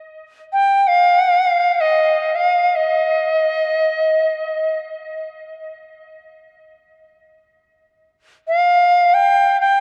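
Peaceful and spacious, this short cut from a longer piece of world meditation music floats in free time. A lone Native American-style cedar flute carries everything as a solo voice, entering at 0.5 seconds and sounding until 9.8 seconds, its woody, reedy tone airy and bright with a gentle vibrato and soft attacks. It sits up front, staying within a narrow upper range, and a diffuse ambient delay trails behind its phrases. The whole recording is bathed in a huge, wet ambient reverb that lingers for 4.4 seconds, lending a vast, open sense of space. The production leans dark and warm, framing the flute's brightness in a soft, enveloping glow.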